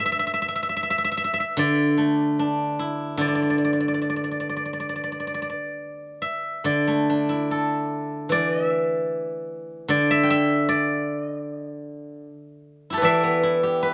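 Chinese traditional music for solo plucked strings, this pastoral, flowing passage is cut from a longer piece and moves in a free, rubato 4/4 at roughly 64-80 BPM in the D zhi mode. A lone steel-string zither carries everything from 0.0 to 13.9 seconds, ranging from D3 up to G5. Played with fingerpicks, its acoustic tone is warm, ringing and silvery, sitting up front in the sound. The music falls into two parts, with a fresh section beginning at 6.7 seconds. Light reverb and the feel of a live performance in one room shape the recording.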